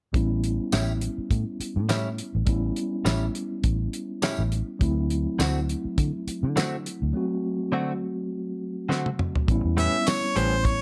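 Light reverb and a close, up-front mix frame this gritty, soulful excerpt of straight-eighth soul blues at 103 BPM in A mixolydian, moving from A7 to D7 before settling on A9 at 9.5 seconds. A dry 70s drum kit with a fat snare, tight kick, hi-hat, tambourine and toms sits with a dark, round, foam-muted fingered electric bass and a mellow tine electric piano heard through its built-in speakers. A clean, compressed, direct-recorded electric guitar adds picked stabs from 0.7 seconds, and after a drum fill a clear harmonica with light vibrato takes the melody at 9.8 seconds.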